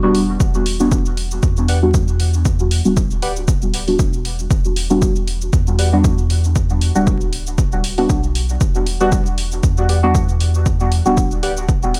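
A deep, mellow chord stab sits up front in this meditative dub techno piece, its soft, vintage tone treated with chorus, phaser, dub echo and sidechain pumping as it dwells on a single Em9 chord. Beneath it, a clean, smooth sine sub bass also pumps with the sidechain. A punchy, overdriven electronic kick and a layered, overdriven hi-hat and shaker, both set in small room reverb, carry a lightly swung 4/4 groove. A warbly lo-fi synth keys riff, nostalgic and detuned, enters at 1.7 seconds and returns at 9.9 seconds, with its own chorus, dub echo and pumping. Vinyl crackle runs through the recording, which otherwise has little reverb, giving the whole a close, hazy calm.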